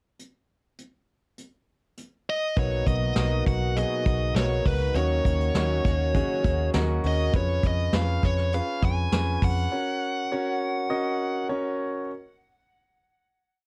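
A bluesy, distorted lead guitar carries a motif-based melody up front from 2.3 s in this hopeful piano-driven pop piece in F# major at 101 BPM, moving from a brief pickup bar into a chorus over Bmaj7, D#m7, C#7/E# and F#. A vintage brush kit with a punchy kick and rolled-off top drives a pop backbeat from 0.2 s. It is joined by a round, foam-muted picked bass playing eighth notes, an intimate concert grand with audible action noise and long sustain playing close-voiced quarter-note chords, and a bright, twangy clean guitar strumming open shapes in the background until 7.3 s, all within a dark, warm production with moderate studio reverb.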